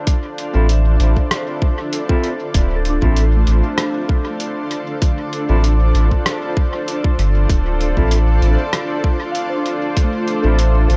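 The recording sounds fairly dry overall, a hazy, spacious fragment of ambient dub cut from a longer piece, moving at 97 BPM in 4/4 with a light swing on the sixteenths and resting on a single Dm7 chord in D minor. A deep, round sine sub bass sits up front beside a tight electronic kick, while a muffled, pitched-down sampler-style kit adds compressed, tape-warm hi-hat and rim click with a dub echo, as if re-recorded in a small room. Above them a cloudy granular pad holds blurred, evolving chords in its own built-in reverb, roughened by vintage 12-bit sampler grit. In the background a soft FM bell, pure and warbling, plays arpeggios through chorus, phaser and tape echo, and a dark, clean electric guitar adds very quiet fingered stabs. At 8.9 seconds a reversed, detuned texture swells in on a bright F4, dreamy and faint, carrying on until the fragment is cut at 11.0 seconds.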